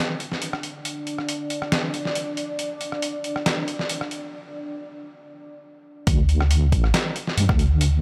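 Deep dubstep at 138 BPM in a half-time, lightly swung feel, this dark, heavy excerpt builds over a moody, detuned ambient pad with chorus and built-in reverb and a gritty, pitched-down, tape-warm sampler kit of hi-hat, rim click and snare, breaks at 4.3 seconds, then drops at 6.1 seconds into an up-front, wobbling sawtooth-and-sine bass with a punchy, overdriven electronic kick.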